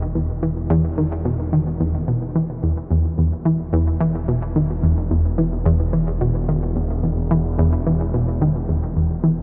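A bright, round analog pluck riff with chorus and delay sits up front over a thick, nasal analog bass from the very start, both drenched in a huge reverb that suggests a vast, echoing space in this cosmic, expansive fragment of ambient, sequencer-driven space music.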